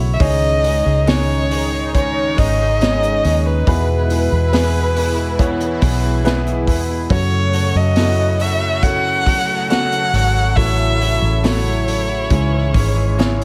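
This pop ballad excerpt in C# minor moves at a slow 69 BPM in a straight 4/4, with a melancholic, longing mood. A concert grand piano carries the accompaniment with a deep, open bass and long sustain, while a direct-recorded clean electric guitar picks compressed arpeggios in the background. Up front, a vintage fingered electric bass gives a dark, round, foam-muted punch, and a single close violin carries the melody with a woody, bowed sul tasto tone and vibrato. An acoustic drum kit played with bundle sticks sounds distant and roomy, pairing a high-tuned snare and punchy kick with hi-hat, as an evolving, bright synth pad with chorus swells slowly through sustained chords behind everything. The harmony drifts from C#sus2 through E, F#m and A6 before settling on C#m near 12.3 seconds, all inside a small room ambience with light reverb.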